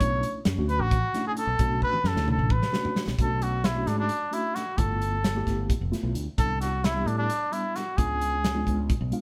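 A lightly reverberant room sound captures a band playing live together in this driving, nocturnal snippet of electric jazz fusion in 7/8, cut from a longer piece. Up front, a cup-muted trumpet carries a veiled, soft-attacked jazz melody over a mellow, reedy electric piano with fast tremolo, while a round, dark fretless bass and an acoustic kit with a punchy kick and pumping room tone hold the groove. The drums play a fill from 1.8 to 3.2 seconds as the harmony shifts from Bm11 toward Bm9, G13, Cmaj9 and C#7b9, and the electric piano adds a brief fill at 8.9 seconds.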